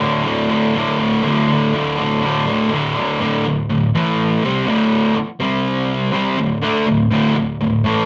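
Swaggering and raw, this short rock fragment cut from a longer piece moves at 123 BPM in a straight 4/4, with a lone fuzz guitar carrying everything from 0.0 to 8.1 seconds. The electric guitar is bright, picked, double-tracked, distorted, compressed and up front, while a slapback echo trails each note as it works through power chords on D, A and C across a range from D2 to D4. The sound is a rough rehearsal-room take, wrapped in a short, wet booth ambience, with the second section arriving at 3.2 seconds.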